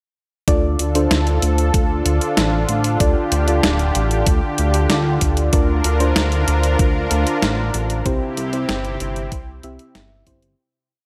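Driving and nostalgic, this short synthwave piece moves in a straight 4/4 over a Dm chord that shifts to Bb/D at 5.5 seconds and to C at 8.1 seconds. A lush, thick unison pad sits up front with a nasal, detuned sawtooth edge, its soft-attack chords sustained under chorus and sidechain pumping. A mellow FM electric piano adds round, full-bodied stabs in close voicing, held chords with syncopated pushes that are coloured by chorus and digital delay. Underneath, a glossy chorused synth bass drives steady eighth notes with a plucky, pumping pulse. An electronic kick drum thumps beneath a detuned 8-bit drum machine whose closed hi-hat and medium-tuned snare give an 80s machine backbeat, both drums re-recorded in a large room. Light reverb surrounds the mix, and the whole piece fades out from 7.2 seconds to its close.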